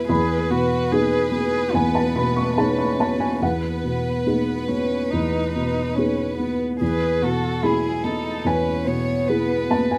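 Light reverb frames a close, intimate recording, with the felt-muted upright piano and the violin section sitting up front. This is a short cut from a longer neoclassical piece for piano and strings, moving at 72 BPM in 4/4 with a rubato feel and a tender mood. The piano carries the accompaniment across its full span from E2 to C#6, its thick felt giving a boxy, mellow tone with short sustain. Alongside it, a chamber violin section sings the melody between G#4 and C#5, bowed sul tasto with a soft attack and light vibrato for a gentle, ensemble glow. A single cello adds a dark second line from B3 to G#4, smooth on top with its own vibrato. The harmony rests on B6 over E before settling on E at 6.8 seconds, and all three parts play throughout the 10 seconds.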